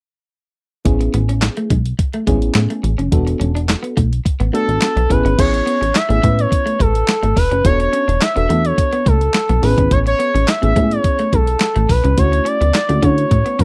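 Danceable and smooth, this early-eighties boogie funk excerpt moves at 106 BPM in a straight 4/4 feel in A major, cycling through Amaj7 and E9sus4 before touching Dmaj7 near 12.2 seconds. A mellow FM electric piano opens at 0.8 seconds with a soft, round, warbling accompaniment treated with chorus, and the rest of the rhythm section follows almost at once. A plucky analog bass sits up front with a punchy, funky sawtooth-and-pulse tone, its fast filter pluck and moving notch giving each dark note a snap. A clean 12-bit drum machine supplies a thumpy kick, medium-tuned snare, handclaps, hi-hat and crash with a tape-warm, small-room character, while an electric guitar at the edge of break-up plays a compressed, picked riff coated in lush chorus. At 4.5 seconds an expressive portamento lead arrives up front, its sawtooth voice gliding between notes with vibrato, chorus and a slapback echo. 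The whole mix is dry and close, with the intimate feel of a 1970s-style studio.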